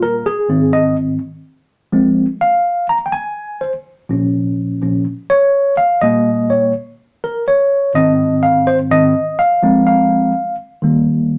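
A straight 4/4 soul groove carries this driving, passionate fragment, played entirely by a solo tine electric piano that moves through Ab, Fm, Bbm and Eb/Bb before circling back to Ab, Fm and Eb. The piano sounds mellow and worn, slightly out of tune yet clean, sitting direct and up front in a wet studio reverb.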